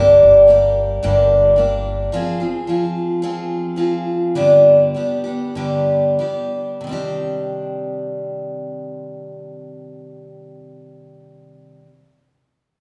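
A picked steel-string acoustic guitar and a pizzicato upright bass open this reflective, intimate acoustic folk excerpt in C minor, tuned to A4 = 438 Hz. The bass is woody and growly, sounding a single low G1 before it stops at 2.1 seconds, leaving the guitar alone. Bright and full-bodied with fresh strings, the jumbo guitar sits up front, accompanying across a range from G2 to Ab4 as the harmony moves through Gm, Fm and G. In straight 4/4 at roughly 89 to 111 BPM, the tempo slows between 2.1 and 6.8 seconds, where a new section arrives on a Cmadd9 chord. The whole duo sits in the wet reverb of a recital hall, giving the playing a spacious, churchlike bloom.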